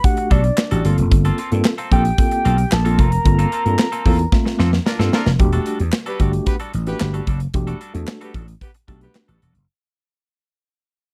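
A dry, close studio sound frames this slick, late-night early-eighties boogie funk cut at 112 BPM: a growly, punchy slap bass and an up-front drum kit with tight kick, snare, hi-hat and handclaps drive beneath a mellow tine electric piano and a twangy clean guitar riff, while a round, octave-layered synth lead with chorus and slapback echo carries the melody until 4.9 seconds, when a smooth horn section takes up a second line, and after a band accent and drum fill the music fades out from 5.4 seconds.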